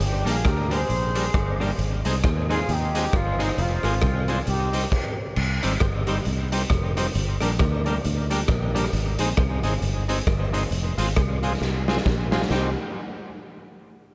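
Energetic and mischievous, this C minor ska cut at 134 BPM swings along on a round, dark fingered electric bass and a raw garage drum kit with a punchy kick and a rolled-off top, while a distant, roomy horn section carries the melody with light vibrato, tape echo and plate reverb for the first 4.9 seconds before a brief stop. A dark, clean electric guitar adds accompaniment and a lightly overdriven, key-clicking tonewheel organ adds stabs, both with tape echo in the background, and a drum fill at 11.6 seconds leads toward the closing C minor chord.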